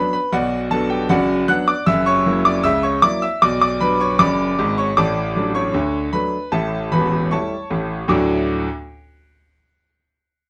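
A clear, smooth grand piano plays solo ragtime in D major at 77 BPM in 2/4 with a straight feel, its vintage tone sitting up front with long sustain in a moderate studio reverb. The playful, cheerful passage spans from the low bass to the high treble, moving through B minor, F#7, D over A and A7 before arriving on D at 8.1 seconds. The piano stops at 8.7 seconds in this short cut from a longer piece.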